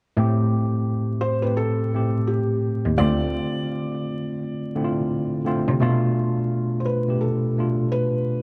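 Nostalgic and reflective, this excerpt of lo-fi hip hop moves at 85 BPM in A minor with a lazy 16th-note swing, built on a worn, slightly out-of-tune tine electric piano that sits up front with light overdrive, as if heard through built-in speakers, carrying chords from Am7 to Dm7 to Bm7b5. A distant, smooth bowed cello with vibrato holds the bass until 6.1 s, while a felt-muted upright piano enters at 1.2 s with an intimate, mellow melody played quietly but close. The dark production adds vinyl crackle, light reverb and a small-room ambience.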